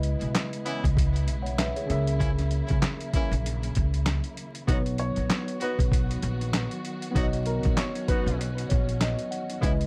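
A swung 97 BPM boom-bap groove of thumpy, compressed, pitched-down sampler drums with handclaps and hi-hat drives this tough, gritty hip-hop cut, where a woody pizzicato upright bass sits up front beneath a worn, slightly out-of-tune tine electric piano and distant, lush bowed strings moving through C#m7, F#7/C# and Bmaj7, while a dark jazz-style horn section adds delayed octave-doubled stabs from 0.7 s and an intimate vintage upright piano with audible action noise carries a brief melody from 5.0 s to 8.5 s, all over dry vinyl crackle.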